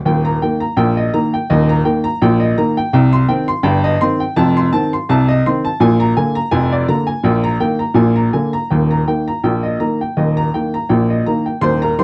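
Ragtime piano in E-flat major, this jaunty, lively clip moves at 83 BPM in 2/4 with a light swing on the sixteenths. A single upright piano carries everything from about 0.1 to 12.0 seconds, its tone clear and woody with short, natural sustain, sitting up front in the mix and ranging from deep Eb1 in the bass up to C6. The harmony travels from Eb through C minor, F7 and Bb7 before settling back on Eb by 8.7 seconds. The instrument is tuned slightly low, at A4 = 436 Hz. The dry, close sound recalls a 1970s studio, touched by light reverb, and the passage is cut from a longer piece.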